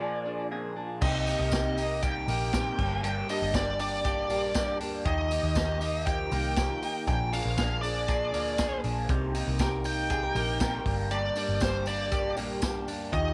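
Jangly indie pop at 119 BPM with a breezy, nostalgic mood, cut from a longer piece: an up-front overdriven lead guitar sings its melody with slapback echo over a slightly broken-up, lo-fi electric guitar with phaser and a clean, direct-recorded electric guitar picking arpeggios with slapback echo, the three guitars playing alone until a foam-muted, round vintage bass, a punchy vintage drum kit with dark cymbals, and a jingly tambourine in the background enter at 1.0 seconds, all set in moderate spring reverb and small room ambience over a Cm7, Gm, Ebadd9 and Bb7 progression.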